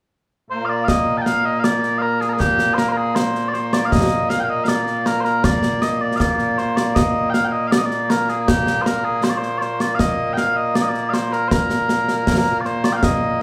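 Scottish traditional pipe music in a straight 2/4 feel, ceremonial and proud, heard in a short cut from a longer piece. Mellow small bagpipes carry the sweet, continuous melody up front with vibrato from 0.5 seconds, joined at 0.9 seconds by concert snare and bass drums with dark cymbals and an acoustic, close presence. The band plays live together in one room, wrapped in a wet, large studio reverb.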